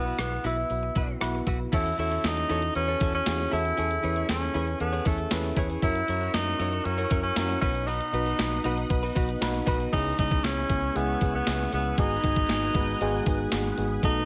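Romantic and glossy, this 1980s-style pop excerpt sets an up-front tenor saxophone with light vibrato and a distant, roomy tone over a mellow FM electric piano and a round, punchy, foam-muted fingered bass. A clean 12-bit drum machine with a thumpy kick, overdrive and gated reverb drives the groove, joined by a jingly tambourine, while a bright, direct-recorded electric guitar with subtle chorus plays a background riff until 9.9 seconds. From 5.8 seconds a warbling, organ-like ensemble string pad with phaser adds sustained chords high above.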